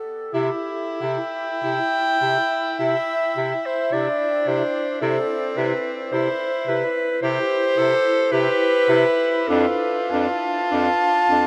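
A warm clarinet carries the lyrical melody from the first instant in this tender classical fragment for single-reed quartet, set in C major at a slow, rubato 42-55 BPM in 4/4. At 0.3 seconds a clear alto saxophone adds a quiet second line, a tenor saxophone with light vibrato and a smooth top fills out the accompaniment, and a vintage-toned bass clarinet anchors the low end. The harmony rests on C before moving to Dm/F at 9.5 seconds, all wrapped in a huge, wet reverb that places the players in a vast, echoing space.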